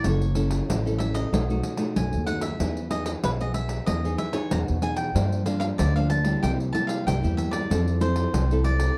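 Samba and choro in a festive, lively mood, cut from a longer piece, where a bright, crisp picked cavaquinho carries the melody over a woody, dark pizzicato upright bass sitting up front, a fingerpicked classical nylon-string guitar with audible finger squeak, and a jingly pandeiro played with soft hands that sounds distant in a large room, all captured in a dry, close 1970s-style studio sound as the chords move from F#m7 through Emaj7 to Fmaj7 by 7.7 seconds.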